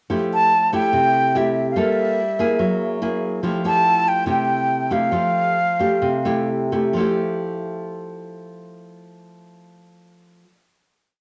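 A breathy, hollow silver concert flute carries a mellow, tongued motif in sentence-like phrases with vibrato, close-miked and up front over a bright nylon-string guitar that fingerpicks thumb bass and syncopated plucked chords through Fmaj9, Gm9 and Gb9. This breezy, relaxed bossa nova piece, with both instruments carrying a cassette tape character, slows from 3.4 s, the flute falls silent at 6.5 s, and the guitar holds a final chord from 7.0 s. The home recording sits in a small room with moderate spring reverb.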